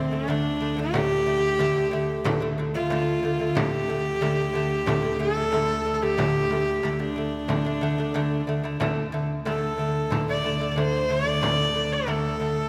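A husky, biting horsehead fiddle opens this windswept Mongolian folk fragment at 92 BPM in a straight 4/4, carrying the melody up front with light vibrato, portamento and a slapback echo, while a delicate fingerpicked lute with gut double strings spins arpeggios beside it. Beneath them, a distant bowed double bass holds an intense, vibrato-laden drone on D2, and from 0.1 seconds a small, band-limited frame drum struck with hard hands sits in the background. A wet concert hall reverb gives the whole a vast, open sense of space.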